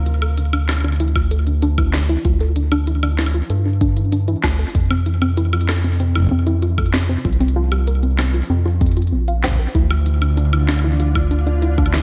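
A round, up-front analog bass anchors this eerie, glitchy IDM excerpt, its deep, wave-folded tone evolving and sustaining beneath the harmony as it moves from Dmadd9 through Fmaj7 and C7sus4 and back. Above it, a dusty, lo-fi pluck spins dark, detuned arpeggios, warbling through chorus and tape echo while a filter sweep runs across its whole length. An organic electronic kit supplies a woody snare, smooth hi-hats and woodblock, tape-warm and echoed, and a deep electronic kick joins at 1.2 s, both drum parts re-recorded in a large room. At 10.1 s a silky, vintage string machine enters with soft sustained chords, thickened by ensemble chorus. Light reverb sits over the whole mix.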